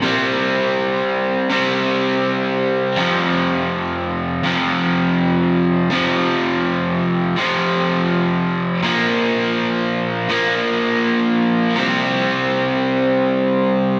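Drenched in a lush hall reverb with a 2.7-second tail, this dreamy rock recording sounds soaked and spacious, cut from a longer piece. A single overdriven electric guitar carries everything alone from 0.0 to 14.0 seconds, sitting up front in the mix with a bright, compressed, double-tracked tone and a diffuse ambient delay trailing behind it. Picked in a range from F2 to C4, it moves through power chords at a steady 82 BPM in straight 4/4, shifting from C5 to F5 at 3.0 seconds and on to Bb5 at 8.8 seconds. At 11.8 seconds the guitar returns to C5 as a new section opens. The mood is brooding yet cathartic, the heavy ambience turning a lone guitar part into something vast and hazy.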